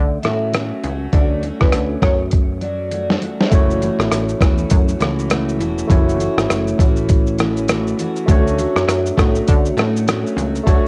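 Up-front, overdriven lo-fi sampler-style drums with a thumpy kick and muffled, pitched-down character sit at the front of this hazy, wistful indie and bedroom pop excerpt at 101 BPM in F# minor, over a punchy, plucky analog bass and a picked, full-bodied steel-string acoustic guitar with lush chorus and finger squeak, while a ringing vibraphone with tape echo appears until 3.1 seconds, a drum fill arrives at 2.3 seconds, and a bright, barky tine electric piano through a combo amp enters at 3.5 seconds as the chords move from Dmaj7 to F#m7, all steeped in cassette-tape home-recording ambience.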